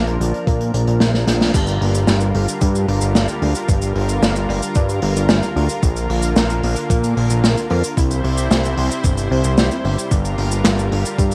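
Moody and nostalgic, this synthwave excerpt moves at 112 BPM in a straight 4/4, opening on Bb before a drum fill and band accent carry it at 1.5 seconds into a section moving through Gm7, Bb and C. A lush, airy unison pad with chorus, sidechain pumping and cassette tape coloring holds sustained chords, while a very quiet, round analog pluck plays arpeggios and a fat, detuned, wave-folded analog bass sits up front with filter sweeps. A distant, roomy acoustic kit played with bundle sticks brings cabasa, handclaps, hi-hat, a medium-tuned snare and a dark crash cymbal, joined from 0.5 seconds by a thumpy, sampler-style electronic kick, and the homemade cassette recording carries light reverb.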